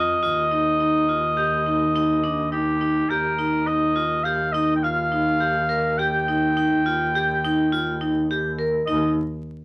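Hopeful and playful, this contemporary chamber piece in 5/4 moves at 104 BPM in Eb major, shifting from an Ebsus2 to an Ebadd9 harmony at 3.1 s. A clear, vintage-toned oboe sings the classical-style melody up front, while a vibraphone struck with hard mallets lays out bright, metallic, ringing arpeggios and a bowed double bass holds down the low end with a warm, focused, smooth-topped tone and vibrato. Moderate studio reverb and a layer of vinyl crackle frame this short passage, cut from a longer work.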